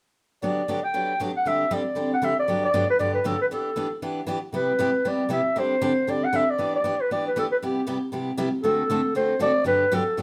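This short excerpt of lively, playful jazz opens at 0.4 seconds with a growling clarinet and a picked steel-string acoustic guitar entering together, swinging in 4/4 at a brisk 234 BPM in G major. The clarinet carries the melody between G4 and G5 with a raspy, gritty subtone, light vibrato and scooped notes, its growl sitting up front yet carrying a distant, roomy quality. Beneath it, the dreadnought guitar supplies picked accompaniment from G2 to A4, its fresh strings sounding bright and full-bodied. The harmony moves from Gmaj7/D and D7sus4 into a longer passage beginning at 2.5 seconds that cycles through Em7, Cmaj9, D7 and back to Gmaj7. Moderate studio reverb surrounds the pair, and both parts stop at 10.2 seconds, where the cut ends.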